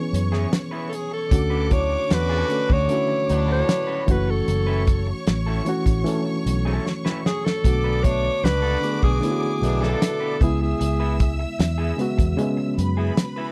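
A clear, up-front alto saxophone carries the melody from 0.9 s over a 76 BPM lush 1970s-style soul groove in F# minor, cinematic and silky, with a dry soul drum kit with a fat snare and a fill at 6.8 s, round foam-muted fingered bass, a reedy, slightly out-of-tune electric piano with fast tremolo, a dark, slightly broken-up lo-fi electric guitar riff, distant horn stabs, and a lush bowed violin section moving through C#m7, Dmaj7, F#m7 and Bm7 in this short excerpt.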